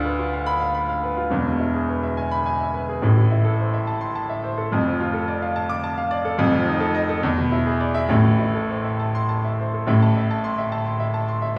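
Classical virtuoso piano study in A minor, agitated and stormy, moving at 71 BPM in dotted quarters in a rubato 6/8, where a clear, present grand piano plays solo and up front across a span from E1 to D6, its harmony turning from Bdim/D through E and Am to Dm/F, F7 and E7 before resolving to Am, with a new section arriving at 9.9 s in this fragment of a longer piece, all set in the wet reverb of a recital hall heard from further back in the room.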